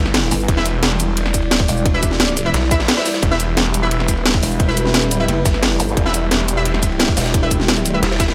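A straight 4/4 drum and bass groove at 175 BPM drives this tense, futuristic excerpt of dark technical drum and bass in E minor, held on an E minor chord throughout. Up front, an overdriven electronic drum kit cracks out a cracking snare with bright hi-hats and cabasa, joined at 0.5 seconds by a tight, overdriven electronic kick, while a crunchy acoustic breakbeat kit with a gritty, rolled-off top, dark ride cymbal and medium-tuned snare sits in the background. Two distorted basses dominate the low end: a snarling, growling detuned saw bass with a resonant moving notch and tube saturation, and a heavy, pulsing pluck wobble bass with chorus that enters at 0.3 seconds. A deep, moody analog pad holds sustained chords underneath with a slow attack, chorus and sidechain pumping. Bold, punchy orchestra-hit-like synth stabs with ring modulation, a filter sweep and tape echo flash in the background, and a very quiet electronic zap flickers at 5.8 seconds, all set in a light digital ambience.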